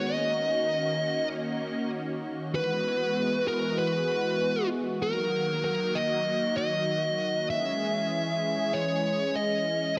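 A fuzzy, picked electric lead guitar with distortion and delay carries the melody up front over a smooth, bright, detuned sawtooth pad with soft attack, chorus and a moving notch, in a cinematic, moody synthwave excerpt at 97 BPM in C# dorian, moving through D#m7, Eadd9, D#m and C#m, with a brief break at 1.3 s, all set in a lush hall reverb and a dark, warm production.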